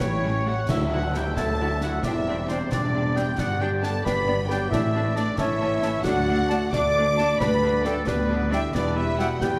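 At 90 BPM in 6/8, this soaring, heroic adventure-film cue in D major is cut from a longer piece and features a full band accent at 0.7 seconds, where mellow French horns carry sustained chords beneath a lush, vibrato-rich violin melody joined by a second violin line, a distant oboe, an airy flute and a very quiet clarinet. Very quiet violas accompany, while a clear trombone section and a roomy solo trumpet add chords and stabs. Woody double basses and expressive cellos hold the bass alongside a brief dark tuba note at the start, and bright-cymbaled snare, bass drum and clash cymbals drive the pulse. A dark tam-tam rings until 2.5 seconds, timpani return from 4.7 seconds, and a wet scoring-stage reverb surrounds the orchestra.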